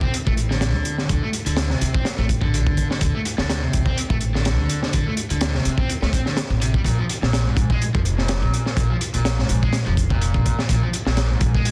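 A crunchy breakbeat drum kit sits up front with a punchy kick, high-tuned snare and gritty, saturated tone, driving this raw, funky breakbeat excerpt alongside a woody, thumpy pizzicato upright bass with tube saturation and a picked, overdriven electric guitar riff through digital delay, all dry and densely limited as the harmony moves from D5 to Bb5 at 6.9 seconds.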